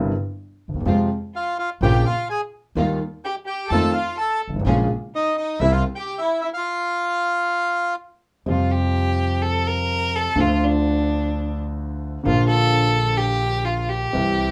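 Passionate and dramatic, this rubato tango at 127 BPM in 4/4 opens with a dark, mellow concert grand piano (its action noise audible) and a woody pizzicato upright bass. Over them a reedy bandoneon carries the melody, a rich vibrato violin adds a second line, and a chamber string section plays soft-attack, sul tasto stabs. After a stop at 6.6 seconds, the violin takes a solo from 8.5 seconds as the music settles into F major, all heard in the moderate ambience of a club in a fragment cut from a longer piece.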